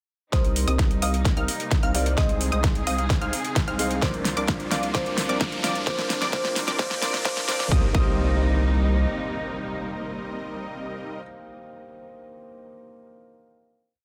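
A dense, heavily limited modern master with light reverb and digital ambience carries this short, anthemic and emotional festival progressive house piece, which is a single build resolving onto a held final chord at 7.7 seconds. Up front, a punchy, tape-saturated electronic kick drives a four-on-the-floor pulse, joined by a fat snare and metallic hats playing a programmed backbeat under a drum fill. A deep, saturated sine sub bass holds a low C, while a detuned sawtooth supersaw plays dotted-rhythm stabs in open voicing beneath a filter sweep. High above, a lush unison pluck spins arpeggios, and a sparkling, bell-like FM electric piano adds short melodic phrases coloured by chorus, phaser and tape echo. An intimate, boxy grand piano with audible action noise holds drop-2 chords with syncopated pushes, a veiled con sordino string section sustains a dark pad, and a riser and impact enter at 3.3 seconds to mark the transition, with the pumping sidechain breathing through the piano, strings, pluck, supersaw and bass.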